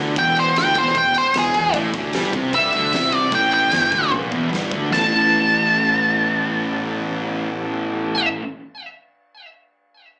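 A driving, straight 4/4 groove at 151 BPM in A mixolydian anchors this gritty blues rock power trio and southern rock fragment, where a huge arena drum kit with fat snare and punchy kick plays from 0.2 to 5.0 s, closing with a fill at 4.1 s, beneath a double-tracked fuzz guitar riff with slapback echo, a dark, round fingered bass with overdrive, a very quiet tonewheel organ holding thick sustained chords through a slow rotary speaker, and an up-front octave-fuzz lead guitar melody with slapback echo over E7, A7 and D7 changes that land on A9, all heard as a live gig through the venue's PA with club reverb and a small speaker sound.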